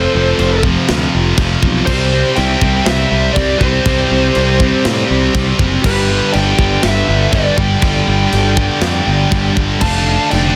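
A growly, punchy picked electric bass sits up front in this relentless, aggressive heavy metal excerpt at 121 BPM, beneath a dark, overdriven lead guitar melody with delay, a distorted high-gain second lead line, two bright high-gain riff guitars and a double-tracked fuzz riff guitar in the background, and a tight, saturated, gritty drum kit with china and crash cymbals, a soft-clipped kick and a rolled-off top, over chords of F, C and G in a dense, heavily limited mix with light reverb.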